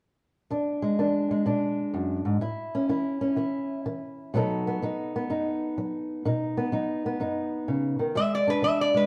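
Laid-back and gritty, this short cut from a longer acoustic country blues piece swings easily at 125 BPM in 4/4, with a fingerpicked old ladder-braced acoustic guitar carrying the accompaniment from 0.5 seconds through an E7, A and B7 progression in a dark, boxy, woody voice on old strings. At 8.2 seconds a lap resonator guitar enters up front with a bright, nasal, metallic slide melody, played with fingerpicks, just as the chords return to E7. The pair sound like they're playing live together in one room, set in a wet studio reverb.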